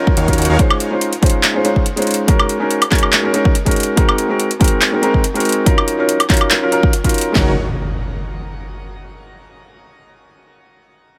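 Euphoric and lush, this future bass excerpt moves at 142 BPM in 4/4 with a half-time feel and a light swing on the sixteenths, set in Gb lydian. A felt-muted upright piano sits up front from the start, soft, mellow and intimate with a vintage character, carrying the accompaniment through chords like Ebm9, Dbmaj7, Gb6 and Ab7 with sidechain pumping and delay. Two layered, overdriven electronic drum kits drive the track, one supplying a punchy kick, fat snare and handclaps, the other adding metallic hi-hats, handclaps and woodblock, both placed close as if re-recorded in a small room. Huge, detuned supersaw chords with a moving notch, sitting in the background, and a thick, nasal analog bass with a saturated filter pluck appear only in brief bursts near the opening and again at 7.4 seconds, both with sidechain pumping. At that point the music shifts into a new section as an electronic impact hits up front and rings out until 9.0 seconds, all within a light reverb.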